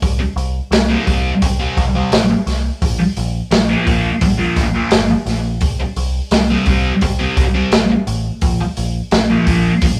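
A rough rehearsal-room sound with a small room's moderate reverb frames this trippy, hypnotic psychedelic rock excerpt at 86 BPM, where a crunchy, gritty breakbeat drum kit with a tight kick and rolled-off top sits up front beside a thick, double-tracked fuzz guitar riff treated with distortion and phaser, while a deep, dark, round dub bass holds the bottom as the harmony alternates between C5 and Bb5.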